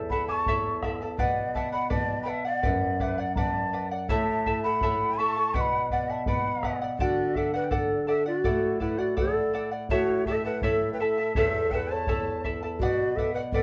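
Shimmering, double-strung charango and a fingerpicked nylon-string guitar, with audible finger squeak, open this melancholic, earthy Andean folk excerpt in B minor at 83 BPM in a straight 2/4, moving among A, B minor and D. From 0.1 seconds a mellow, hollow large quena carries the melody with vibrato and a crisp chiff, joined by a breathy, bright shakuhachi on a quieter second line. A deep, distant bombo sits beneath the ensemble, which plays live together in a moderately ambient studio room.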